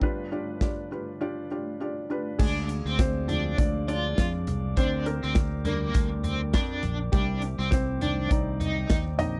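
A dry, close 1970s-style studio sound frames this dramatic, bittersweet piano-driven pop excerpt at 101 BPM with a 16th-note swing, where a muted, intimate felt upright piano with audible action noise and a kit of bright cymbals and a punchy kick open together over a G7 chord before, at 2.4 s, a round, dark fingered bass, a biting overdriven guitar riff with tremolo and a faint, ethereal glass harmonica holding glassy chords in the background join as the piano takes a solo over a Ddim, Gm/D and Cmadd9 progression.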